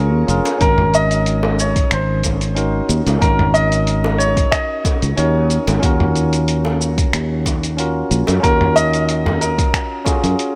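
Lightly reverberant digital ambience frames this wistful, relaxed sunset chillout excerpt at 92 BPM in 4/4, where a clear, polished baby grand piano carries the melody through digital delay and shimmer reverb over a bell-like, barky tine electric piano sharing those effects. A growly, up-front fretless bass with analog chorus sustains beneath chords moving from Db69 to Ab9sus4 at 0.6 s and Ebm7 at 5.8 s. A gritty, tape-warm sampler-style kit of cabasa, finger snaps, hi-hat and toms joins at 0.3 s, then distant, high-tuned bongos played with hard hands and a deep, layered electronic kick follow.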